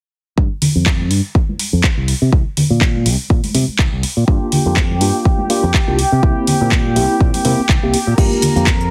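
A bright, punchy fingered electric bass opens this short groovy, funky filtered disco house excerpt at 123 BPM with a lightly swung 16th feel, joined at once by an up-front electronic kick, egg shaker and congas from a small room, and a house kit of metallic hats, handclaps, shaker and crash. The bass, percussion, hats and crash pump under sidechain, and everything passes through a filter sweep. At 4.3 seconds a mellow tine electric piano with phaser adds accompaniment while a distant, reedy chamber string section with light vibrato holds sustained chords over a Gm7 to C7 progression. The whole mix carries a heavily compressed, radio-like sheen in a digital ambience.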